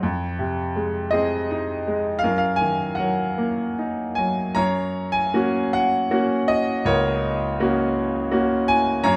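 A bright, natural-sounding concert grand piano plays alone in this dark, reflective fragment of lyrical classical solo piano, moving in a rubato 3/4 at roughly 75-84 BPM across a range from Db2 to Bb5, its deep bass and brilliant upper notes sitting up front in a moderate studio reverb as the harmony passes from Fm7 to Ebm/Gb at 2.2 seconds and settles on Gb at 4.6 seconds, all tuned to A4 = 441 Hz.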